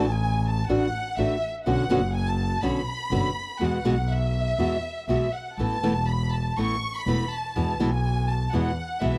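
A close, bowed violin section with warm vibrato and expressive portamento carries the solo line throughout this sultry, dramatic rubato tango fragment at 123 BPM, over small, fingerpicked nylon-string guitar accompaniment with audible finger squeak and a focused, clear bowed double bass with its own vibrato, all captured in a dry, close 1970s-style small-room studio sound as the harmony moves from Dadd9/A through Bmadd9, Eadd9 and Asus2 to E.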